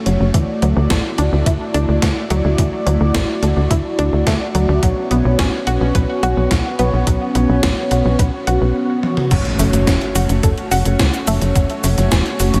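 A dreamy, reverb-soaked mix opens this moody, driving synthwave excerpt in F# minor, moving at 107 BPM in a straight 4/4. A chorused pulse-width pad holds shimmering, mellow chords with a soft attack and sidechain pumping, moving from Dadd9 to Bsus2 at 4.8 seconds before settling on F#m. Beneath it a tight, punchy sequencer bass sits up front, its sawtooth and square-wave tone carrying a ring-modulated edge and the same pumping. A round, nasal analog pluck spins arpeggios in the background through chorus, phaser and delay, while a gated 80s digital drum machine supplies cabasa, hi-hat, toms, crash and a gated-reverb snare over a thumpy, tape-warm electronic kick. A drum fill at 9.0 seconds leads into a new section at 9.3 seconds, where a very quiet electronic impact sounds until 11.6 seconds.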